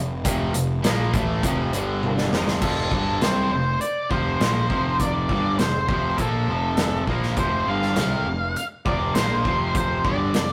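Classic rock with a swaggering, driving feel, this piece is cut from a longer work and moves at 101 BPM in a straight 4/4 in F major. A cranked stack guitar with bright overdrive and an overdriven semi-hollow guitar sitting in the background both play the riff from the start, while a fuzz picked electric bass adds a punchy, overdriven low end. A big rock drum kit enters at 0.2 seconds, up front with bright cymbals, a medium-tuned snare and a punchy kick, and a drum fill from 2.0 to 2.6 seconds leads into the next section. At 2.6 seconds an octave-fuzz lead guitar takes the melody, its dark, distorted tone placed up front. The harmony moves from F to G5 and then to F5. A moderate stone room reverb and warm saturation give the whole take the rough character of a rehearsal-room recording.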